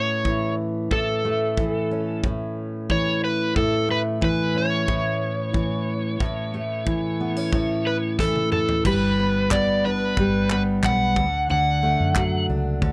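A straight 4/4 pulse at 91 BPM drives this carefree, easy-going acoustic pop clip, cut from a longer piece. A fingerpicked steel-string acoustic guitar sits up front from the start, its jumbo body full and fresh-stringed, with audible finger squeak. Beside it, an overdriven slide guitar carries the melody with a warm tone. A modern studio drum kit joins at 0.3 s with a tight kick, medium-tuned snare, handclaps, toms and crash, all in a small-room sound, and a drum fill at 8.2 s leads into a new passage. There a vintage muted electric bass enters at 8.8 s, dark, round and punchy, as the harmony moves from A to G and then D. The close, detailed miking keeps the whole picture dry.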